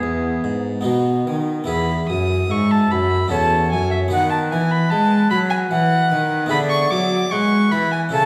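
A wet recital-hall reverb, lasting about 1.4 seconds, surrounds this short cut from a longer baroque-style sonata movement in triple metre, giving it a flowing, dance-like lilt. A clear oboe with light vibrato carries the melody from a distant, roomy position, while a rich violin with a gut-string, period-style tone plays the second line up front with a reedy edge. Beneath them a close-miked harpsichord sounds dry, full and round, its single set of plucked strings giving a French-style accompaniment. A warm, nasal cello, bowed by one player, supplies the bass. The harmony opens on E, passes through F#m7 over E at 3.3 seconds and reaches E7 over D at 6.5 seconds, with all four parts playing together throughout.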